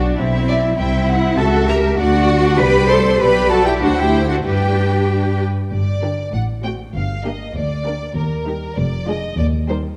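A quick, graceful and cheerful classical-period string orchestra passage in 2/4 at 98 BPM opens in G major, with a distant violin section singing the melody over smooth violas, a lush cello section and a focused, up-front double bass line, while a close, vibrato-laden second violin part joins at 0.2 s. At 5.7 s the music turns to G minor, moving through diminished and E-flat harmonies. A moderate concert hall reverb lends the dark-toned production a spacious glow.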